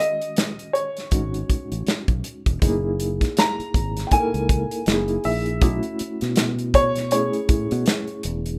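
This short excerpt, cut from a longer piece, features a dark, mellow baby grand piano carrying the melody up front, its intimate tone touched by audible action noise, short sustain and a plate reverb. It is lush 1970s-style soul at 80 BPM in 4/4 with a 58% swing on the sixteenths, tuned to A4 = 438 Hz, and the mood is silky and cinematic. Beneath it, a reedy, worn electric piano plays accompaniment through its built-in speakers with a fast tremolo and plate reverb, sounding slightly out of tune. An acoustic studio drum kit sits close in a small room, with a tight kick, medium-tuned snare and hi-hat. A round, punchy fingered electric bass, dark and direct, arrives at 1.1 seconds as the harmony moves from a rootless Emaj13 through G#7sus4, F#13 and B9sus4, all within a rough home demo mix.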